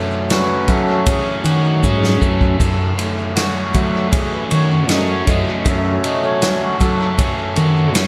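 A reedy, breathing hand-pumped harmonium takes the solo with sustained chords in this dark, hypnotic psychedelic rock fragment at 78 BPM in F# dorian, resting on an F#m chord. A bright, double-tracked overdriven guitar riff with phaser sits up front over a softly plucked, buzzing tanpura drone, while a vintage drum kit with dark cymbals, a punchy kick and dub echo enters at 0.3 s alongside grainy maracas, playing a fill at 1.8 s. A round, fuzzed fingered bass joins at 0.7 s, all within an echo-heavy mix with light reverb.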